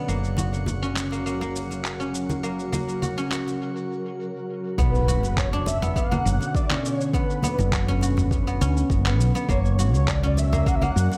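A straight 4/4 groove at 102 BPM from a gritty, tape-warm sampler-style soul kit with handclaps, shaker and toms, plus ringing congas in the background, carries this mystical, hypnotic organic downtempo excerpt in B harmonic minor, over a round, woody fretless bass sitting up front. A silvery, fingerpicked guzheng plays arpeggios through a filter sweep and tape echo while an ethereal, airy pad holds sustained chords with sidechain pumping, and a faint, glassy glass-harmonics texture drifts above until a brief break at 3.6 seconds. At 4.8 seconds a deep, overdriven electronic kick arrives with a very quiet electronic impact, and a breathy, flute-like synth lead with tremolo and vibrato takes the melody as the harmony moves from Bmadd9 to F#7 in an echo-heavy mix.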